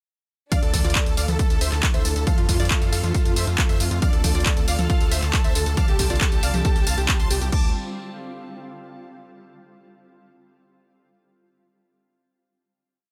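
A dry mix opens straight into a euphoric, driving uplifting trance drop in D minor at 137 BPM, where an overdriven, up-front four-on-the-floor kick and a layered techno kit of closed and open hats, claps, tambourine, mid toms and crash power a gritty, saturated synth bass rolling in sixteenths with sidechain pumping. On top, a huge, detuned supersaw lead with dub echo and pumping plays a repeating sixteenth-note riff in thirds and sixths over a pedal note, doubled in unison by a very quiet, warbling vintage pluck. A dark, intimate violin section with light vibrato and digital delay plays a repeating riff melody in octaves, while from 1.1 s a shimmering, ethereal pad holds chords through Dmadd9, F, Dm and Csus4 before a final Dmadd9 chord at 7.5 s.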